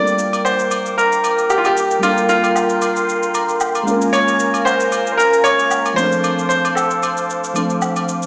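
Heard as if through a big sound system in a bare room, with large studio reverb and a small-speaker tint, this short cut from a deep, hypnotic amapiano piece swings in 4/4. A clear, up-front concert grand piano carries the melody with digital delay. Beneath it, a soft, round FM electric piano with chorus adds a fill from 3.1 to 4.1 seconds, and a smooth, warbling vintage analog pad holds sustained chords moving through Gm7, Bbm7 and Dm7, while an overdriven, layered electronic shaker drives the groove and close, dry agogo bells and woodblock fill out the percussion in the background.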